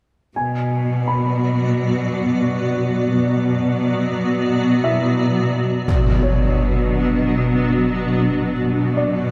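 A lush, bowed cello section holding a low B and a clear baby grand piano with delay open this tense, relentless cinematic excerpt in B dorian at 87 BPM. A blurred, evolving granular pad joins at 1.0 s on sustained Bm chords, before an up-front electronic impact lands at 5.9 s, all set in a moderate scoring-stage reverb with a dark, warm production.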